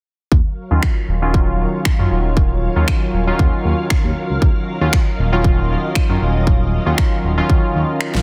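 A dense, heavily limited mix with light digital ambience frames this deep, warm deep house excerpt at 117 BPM in Eb minor, where a punchy, up-front electronic kick and a smooth sawtooth synth bass set the groove under a single Ebm9 chord, the bass carrying a filter sweep and sidechain pumping. Round, airy analog keys enter with stabs at 0.7 seconds, warbling through chorus, a low-pass filter, digital delay and a sweeping filter. Overdriven finger snaps and a fat snare follow at 0.8 seconds, while a silky string machine holds sustained chords under ensemble chorus and vintage 12-bit grit through to the end, the kick dropping out at 8.0 seconds.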